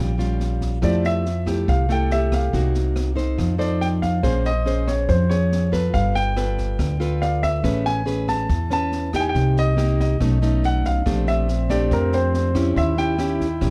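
Bossa nova at 141 BPM, sunny and sophisticated in this excerpt from a longer piece, with a polished grand piano carrying the melody through plate reverb over fingerpicked nylon-string guitar and a woody, thumpy pizzicato upright bass up front, an open jazz kit joining at 0.2 s with rim clicks, a high-tuned snare and a boomy kick, a clear baby grand piano adding intimate accompaniment in the background with its action noise audible from 0.8 s, and a close-miked trombone with scooped notes slipping in a second line at 11.0 s, set within a dark, warm production.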